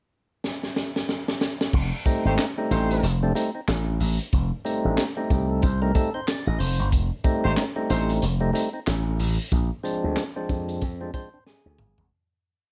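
A growly slap bass, pushed through an envelope filter, enters at 1.7 seconds with a syncopated riff anchored on the downbeat, driving this playful, energetic funk piece at 92 BPM in F mixolydian with a swung 16th-note feel. A crunchy, saturated breakbeat kit with a high-tuned snare and tight kick opens with a fill at 0.4 seconds and lays down a heavy on-the-one beat, while a fat, lightly overdriven tonewheel organ with key click and a stopped rotary speaker plays percussive rootless chord stabs and short fills. A clear horn section adds brief punchy stabs in octaves, and the harmony moves from F9 to a rootless Bb9 as the piece fades out from 9.5 seconds in light reverb.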